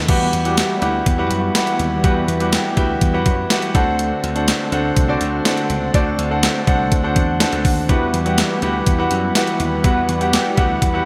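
Moody and urgent, this 1980s-style pop excerpt in E minor at 123 BPM sets a clear, intimate concert grand piano with audible action noise up front over a bold, evolving sawtooth pad with chorus, a punchy slap bass, a thumpy, tape-warm 12-bit drum machine with crash, hi-hat, snare and tambourine, and dark, detuned synth-brass stabs that play from 0.1 to 3.4 seconds and return at 7.9 seconds, all moving from Emadd9 to D7 and back inside a lush hall reverb and bright digital production.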